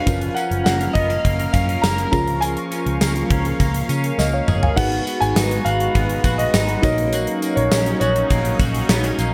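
A polished, lightly reverberant 1980s-style pop excerpt, romantic and uplifting, where a clear grand piano with long sustain carries the melody over a tremolo-laden FM electric piano, a bright, detuned sawtooth pad with chorus, and a twangy, slightly broken-up guitar riff drenched in lush chorus. Underneath, a round, foam-muted picked bass and an up-front gated drum kit with a punchy kick, bright cymbals and big-room gated reverb drive the groove, joined by a jingly tambourine in the background. A drum fill at 4.2 seconds leads into a second section at 4.8 seconds, where the harmony moves from F#maj7 and C#6 to G#m7 and D#m7/A#.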